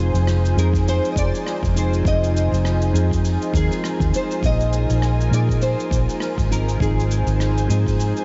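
A 101 BPM groove swung on the sixteenths, with a brushed jazz kit on hi-hat, rim click and shaker and a deep electronic kick joining at 0.7 s, carries this relaxed, wistful sunset chillout fragment in F minor: a dark, round, up-front hollow-body electric bass plays alongside mellow, chorused electric-piano-like synth keys with tape echo, an airy, breathy, detuned pad holds sustained chords, and a full-bodied, fingerpicked nylon-string guitar sings the melody through analog chorus and diffuse delay until 7.4 s, the whole mix soaked in huge, dreamy reverb with a dulled top.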